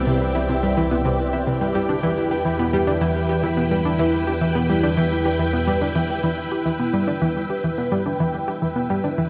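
A round, sub-octave analog pluck sits up front in this cosmic, mysterious stretch of sequencer-driven space music, playing a riff with a fast attack and short decay through chorus and analog delay. At 107 BPM in a straight 4/4 and E minor, a swirling, vintage string machine holds sustained chords through ensemble chorus and phaser, moving from Cmaj7 to Em at 1.8 seconds. Further back, a fingerpicked concert harp rings out arpeggios through analog delay, while a twinkling granular texture adds a sparkling, octave-up shimmer with its own reverb. An evolving, nasal analog drone carries the bass with pulse-width modulation and chorus until 6.2 seconds, where the second section begins. Cut from a longer piece, the recording has a dark, warm production set in a wet concert hall reverb.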